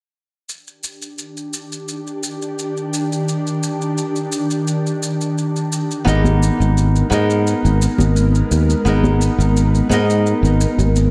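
A growly, punchy fretless electric bass sits up front in this sunny sunset chillout excerpt at 86 BPM in Eb major, arriving near 6.1 s with the shift from Ebmaj7 to Abmadd9, alongside a full-bodied fingerpicked nylon-string guitar tinged with 12-bit sampler grit and tape echo and very quiet, ringing congas, all over an overdriven electronic shaker that starts at 0.5 s and an ethereal, detuned sawtooth pad that swells in slowly from 1.1 s with chorus, phaser and reverb, in a dark, lightly reverberant mix.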